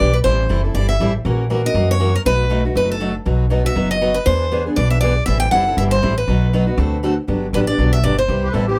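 Close, detailed microphones and light reverb give this short, lively cut of acoustic string swing in the jazz manouche style an intimate, present sound. A bright, boxy parlour-style picked steel-string guitar carries the playful melody with audible finger squeak, while a second fresh-stringed auditorium guitar supplies the accompaniment over a woody, dark, thumpy pizzicato upright bass on gut strings, each of them up front. The harmony moves from Am7 through B7 and E7 before turning to Gmaj7 at 7.3 seconds, and a reedy, shimmering musette accordion slips in with a brief second line at 8.4 seconds just as the piece is cut off.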